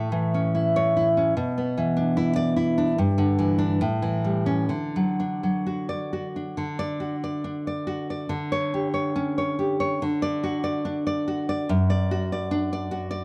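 Romantic solo classical guitar in D major, sunny and warm, moving at a rubato 63-76 BPM in 2/4 and cut from a longer piece. A fingerpicked nylon-string guitar sits up front with a deep, acoustic classical tone, ranging from F#2 to D5 as its harmony passes through A, E5/B, Em7/G and A7 before settling on D around 4.7 seconds. A second phrase from 6.6 seconds lingers on Dsus4 and D before closing on D/F#, all wrapped in light reverb and a dark, warm production.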